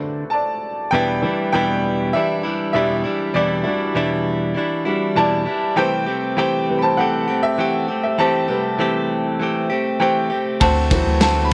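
This piano-driven pop excerpt in E minor moves at 99 BPM in a straight 4/4, with an earnest, bittersweet mood. A clear, woody upright piano sits up front playing the accompaniment, while a clean, compressed electric guitar, recorded direct, carries a picked riff alongside it throughout. The harmony settles from a brief D onto Em7, shifts to Am7 at 5.8 seconds, and reaches D7 at 10.6 seconds. At that same moment, a round, deep analog bass and a loose acoustic indie drum kit enter. The drums bring a tight kick, a medium-tuned snare and ride cymbal with a pumping small-room sound, but they last less than a second before the cut. A moderate spring reverb and small room ambience give the recording an intimate, slightly roomy sound.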